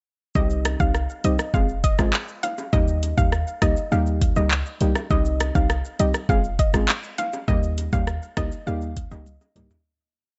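At 0.4 s a sparse dancehall beat arrives together with a deep, boomy 808-style bass, dusky chord stabs, a soft pluck hook and very quiet bongos, setting a tough, sultry mood at 101 BPM in a straight 4/4. The electronic afro-pop kit sits up front, with a deep kick, dark hi-hats, rim clicks, handclaps, shaker and toms, while tight, high-tuned acoustic bongos with a vintage, band-limited tone sit far back. The clean, sine-like bass plays syncopated low notes under mellow, nasal stabs that carry chorus and sidechain pumping, moving through Cm, Fm and Eb. On top, a round, gently detuned pluck with chorus and tape echo repeats a syncopated hook in a narrow high range. The digital ambience keeps the sound soft and dim, a fade-out begins at 7.5 s, and a drum fill closes the piece from 9.3 s.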